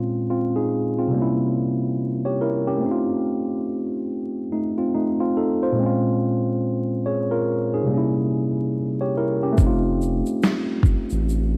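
Melancholic and reflective, this lo-fi hip hop excerpt opens with a worn, slightly out-of-tune tine electric piano, lightly overdriven through a combo amp, moving alone through minor and altered seventh chords under light reverb, a cassette home-recording grain and vinyl crackle. At 9.6 seconds a gritty, compressed sampler-style drum kit enters with a thumpy kick, medium-tuned snare and finger snaps in a swung feel, joined by a deep, thick saturated sub bass and a grainy egg shaker tucked in the background. The drums fall away at 11.1 seconds as the piano, bass and shaker carry on briefly.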